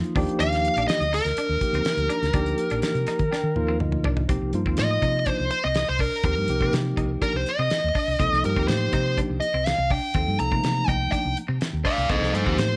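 An intense, slick electric jazz fusion excerpt in a straight 4/4 at 123 BPM opens on a clean tine electric piano with medium tremolo and a dry, damped 70s drum kit with a fat snare and tight kick; a round, dark hollow-body short-scale fingered bass and twangy, compressed clean guitar stabs under lush chorus join at once, along with a smooth, overdriven, up-front lead guitar melody; a piano fill arrives at 2.8 s and a drum fill at 3.3 s, and the lead guitar takes a solo over C dorian from 4.3 s, set in a moderate club reverb.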